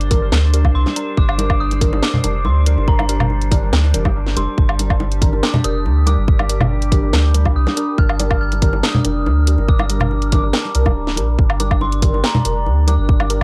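Deep dubstep in G minor at 141 BPM with a half-time feel, this cavernous, dark excerpt is built on a tight, up-front electronic kick and a round, saturated sub bass, with a garage drum kit's cracking snare, hi-hat and woodblock and softly played congas and bongos underneath, while a resonant overtone-sweeping drone holds chords, a muted filtered chord stab sounds through phaser and dub echo, and an eerie, warbling detuned synth bell carries the melody over a dry, gritty mix.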